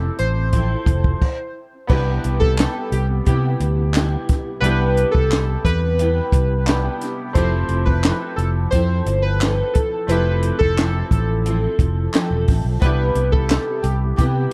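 A straight, unhurried 4/4 groove from a compact cocktail drum kit sets the pace of this sunny, laid-back bedroom pop excerpt from a longer piece, with a punchy kick, a high-tuned snare, hi-hat, crash and dark cymbals in a small room. The band halts for a brief stop at 1.2 seconds before the second section opens, and crisp, band-limited group handclaps with a vintage feel join from 2.6 seconds. A round, amped fingered electric bass sits up front, while a full-bodied jumbo steel-string acoustic guitar, picked with audible finger squeak and coloured by ensemble chorus and vibrato, fills the middle beside a woody, slightly detuned upright piano whose action noise gives it an intimate presence. On top, warbling lo-fi synth keys carry the nostalgic melody, blending triangle and sawtooth tones with a filter sweep, fast-attack, decaying notes, phaser and subtle chorus. The harmony drifts between Fmaj7 and Cmaj7, and the production is dark and warm with a small room sound.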